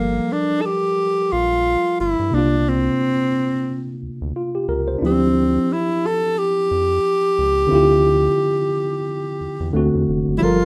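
A mellow, close-miked tenor saxophone sings a subtone jazz melody with light vibrato and a slapback echo over a worn, lightly overdriven and slightly out-of-tune tine electric piano and a deep, round analog bass in this smooth, late-night neo-soul R&B excerpt at 89 BPM with a swung 16th feel, moving through Gm9, C9sus4, Dm11 and D7 in a rough home-demo mix with light reverb.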